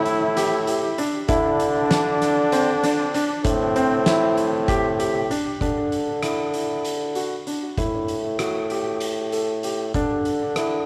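Set in a moderate echo chamber with a 2.2-second tail, this brief cut from a longer progressive instrumental feels brooding and tense. It moves in 7/8 at 194 BPM counted in eighths, with a straight feel in A dorian, passing through A7(no3), Dsus2 and Am7 before opening into unharmonized stretches around a bare A5. A mellow, vintage bassoon carries the bass up front in a classical manner, while a polished concert grand piano spins arpeggios with deep bass and a tape echo. A breathy flugelhorn with vibrato and a soft, whispered attack adds an intimate second line, falling silent at 5.3 seconds. Underneath, an oversized low-tuned drum kit of kick, snare, hi-hat and rim click sounds gritty and saturated, its fat snare and punchy kick ringing through a bright, pumping stone room.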